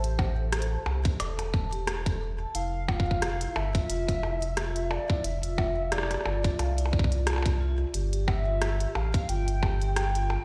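A warbling, nostalgic lead carries the melody through this melancholic, glitchy IDM excerpt at 89 BPM, its triangle-and-sawtooth tone thickened by analog chorus and digital delay, while a soft-mallet vibraphone rings out airy, metallic arpeggios with motor vibrato and its own delay. Beneath them a round, sine-like sub bass with tube saturation sits up front alongside a tight electronic kick that enters at 0.2 seconds, and a tape-tinged glitch kit adds clicky hi-hats, percussion blips and rim clicks with a delay of its own, all on a lightly swung 16th-note feel. The chords move from A minor to F and G, and the whole piece sounds as if played back through a big sound system in a bare room, with large studio reverb and digital ambience.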